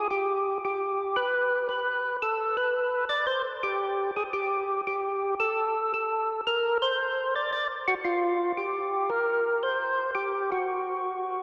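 Swung eighths in 4/4 at 113 BPM carry this soulful, greasy jazz excerpt, tuned to A4 = 441 Hz. A fat, lightly overdriven tonewheel organ plays alone and up front for the full 11.4 seconds, staying between F4 and D5, its third-harmonic percussion giving each note a click while vibrato and a slow rotary speaker keep the tone moving. A cathedral reverb with a 4.5-second decay, as heard in a church or concert hall, surrounds the organ in a long, wet wash.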